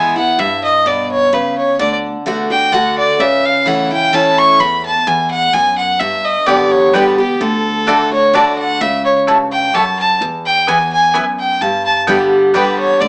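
Heard through a small speaker with a moderate studio reverb, this short cut from a longer bluegrass piece feels rustic and driving in a straight 3/4. A clear, earthy fiddle, bowed by a single player with light vibrato and a smooth top, takes a solo up front from the start and carries it through the whole passage. Beside it, a bright, full-bodied dreadnought steel-string acoustic guitar is picked as accompaniment, also up front. A dark, thumpy upright bass enters at 0.4 seconds, plucked and woody in the background. A warm picked mandolin with its double strings adds stabs from 6.5 to 12.6 seconds. Meanwhile the harmony moves twice through G, D and A/C#, landing on Eadd9 the first time and E the second, before returning to G.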